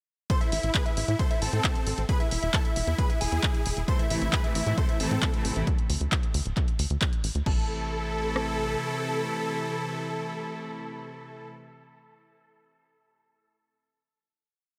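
Huge, detuned supersaw chords carry a bright, repeating sixteenth-note riff in thirds and sixths over a pedal note, with a punchy, catchy unison lead doubling the anthem an octave higher in the background, both pumping with sidechain and trailing dub echo in this soaring, bittersweet uplifting trance drop. Beneath them, an analog drum machine re-recorded in a large room drives a four-on-the-floor kick with rim clicks, programmed claps, hats and crashes, while a dark, galloping sequencer bass pushes the pulse. At 3.9 seconds a distant, reedy chamber string section joins with sustained bowed chords and light vibrato, and from 7.5 seconds the piece settles onto a final chord, all in a dry, close-sounding mix.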